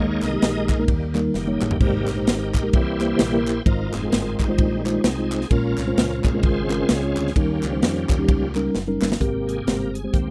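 A dry, rough home-demo sound with little reverb frames this short cut from a longer uptempo gospel piece, hopeful and reverent, swinging in 4/4 at 130 BPM in Ab major. A bright tonewheel organ takes the solo throughout, its full, shouting tone lightly overdriven and spun through a fast rotary speaker with chorus vibrato over sustained chords. Underneath, a mellow tine electric piano supplies clean accompaniment, while a fingered electric bass adds a dark, round, punchy low end. A tight funk drum kit with an airy, polished sound, a medium-tuned snare and a tight kick enters up front at 0.2 seconds alongside crisp group handclaps that stop at 9.1 seconds, and the drums play short fills along the way. The harmony moves from Ebsus4 through Abmaj7, Fm7, Bbm7 and Eb7 before settling on Abmaj9 at 9.2 seconds for a brief closing passage.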